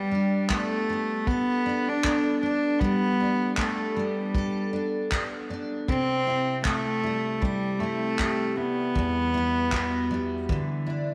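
A rich, reedy cello carries the melody from the start, bowed close and up front with a gut-string, period-style tone, over a dark, woody steel-string acoustic guitar that is picked and double-tracked, while a fingerpicked nylon-string guitar adds arpeggios in the background. At 0.5 seconds an unplugged drum kit enters with handclaps and a punchy kick played with bundle sticks, sounding roomy and distant yet up front. This sunny, easy-going acoustic pop excerpt sits at 78 BPM in G major with a lilting swing, moving from Gadd9 to C and on through Emadd9 and Dadd9, all bathed in a moderate echo-chamber reverb.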